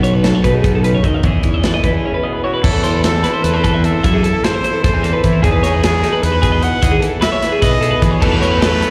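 A clear, close-miked trumpet with light vibrato takes the solo melody from 2.4 seconds in this playful, bright math rock and midwest emo fragment, set in E major and 7/8 at a brisk 301 BPM counted in eighths. Beneath it, a pair of clean, twangy twelve-string electric guitars with slapback echo share the accompaniment and the high arpeggios, while a growly fuzz bass sits up front and a punchy acoustic kit drives with kick, snare, hi-hat and crash around a short break at 2.0 seconds. A dark, biting double-tracked guitar riff surfaces in the background at 8.2 seconds, and the whole performance sounds like a live gig heard through the venue's PA, carrying recital hall reverb.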